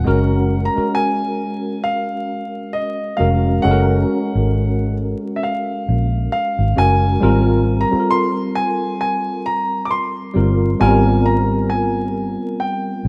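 Swung sixteenths at a lazy 67 BPM in 4/4 give this short cut from a longer neo-soul R&B piece a relaxed, sensual sway, as the harmony moves from Gbmaj9 to Abmaj9 at 7.2 seconds. A dark, round, foam-muted fingered electric bass sits punchy and up front beneath a worn, slightly out-of-tune tine electric piano that plays chorused accompaniment through a combo amp, while an intimate grand piano carries the high melody with its key action audible. A moderate plate reverb and vinyl crackle give the whole thing the rough, homely feel of a demo.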